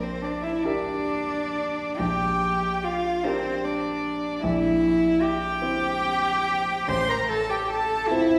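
Up front and close, a single cello plays a second line with light vibrato, soft attack and airy sul tasto bowing beneath an intimate solo violin melody, while a smooth, vintage-toned grand piano with short sustain accompanies through Gm/Bb, C7/Bb and F/A in this tender, lyrical 8.4-second fragment of a slow romantic piano-trio movement, played with rubato in 12/8 at 42-51 BPM, tuned to A4 = 441 Hz, and bathed in a wet recital-hall reverb lasting 1.6 seconds.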